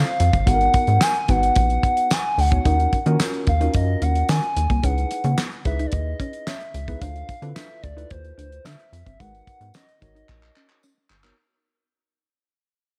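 Set in a light studio reverb and fading throughout, this slick, late-night early-eighties boogie funk groove moves at 110 BPM in a straight 4/4, cycling through minor ninth chords from Abm9 to Ebm9, Dbm9 and Dm9. An up-front, rubbery square-wave bass and a dry, damped 70s kit with a fat snare, tight kick, hi-hat and handclaps drive it, while a hollow, woody synth lead with chorus and vibrato carries the melody over a worn, slightly out-of-tune tine electric piano with light overdrive. A jingly tambourine joins at 1.0 s and a dark, clean, fingered electric guitar riff enters in the background at 2.7 s, before a drum fill arrives at 10.3 s near the end of this excerpt.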